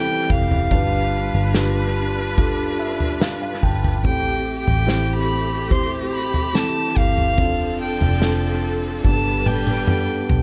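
A dry, echo-heavy mix with a muffled top end frames this tender, heartfelt pop ballad fragment at 72 BPM in 4/4, moving through Cmaj7, G7, Am7, F6 and Gadd9. A distant yet up-front solo violin, bowed sul tasto with a soft attack, carries the melody in a pure, floating tone treated with dub echo, over a felt-muted upright piano that sounds mellow and intimate, its action noise audible, also echoed and adding a fill at 2.4 seconds. A lush string section holds clear sustained chords with vibrato, a round, foam-muted electric bass sits dark beneath, and an airy acoustic kit played with bundle sticks enters at 0.3 seconds with punchy kick, snare and toms, closing on a drum fill at 9.0 seconds.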